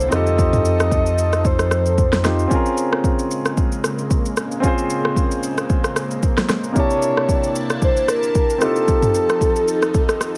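This deep, hypnotic amapiano excerpt opens with everything at once: a breathy, flute-like synth lead with chorus, delay and vibrato floats over an intimate concert grand piano, a lush, detuned unison pad and a tape-warm deep house drum kit with a swung sixteenth-note feel. The kit sits up front, its deep kick and fat snare layered with rim click, shaker and toms. A full sine sub bass with an added octave holds a low F only until 2.5 seconds, while the chords move from F7 to Bbm9. The pad stays further back, thick and bright with chorus and phaser, and it pumps with sidechain compression. The piano plays throughout, present and polished with long sustain and audible action noise. After the lead pauses, it returns at 6.8 seconds as the harmony shifts to C13 and then back to F7, all in a light reverb.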